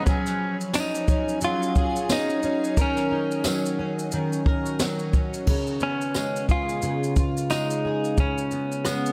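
A clean, scooped electric guitar carries the melody with spring reverb over fingerpicked, full-bodied acoustic guitar and a brushed drum kit with dark cymbals, while a shimmering, ethereal pad drops out at 5.4 seconds, a distant tambourine jingles in the background, and a pedal steel slides in briefly at the start and end of this heartfelt, carefree acoustic pop excerpt at 89 BPM in Db mixolydian with a swung feel.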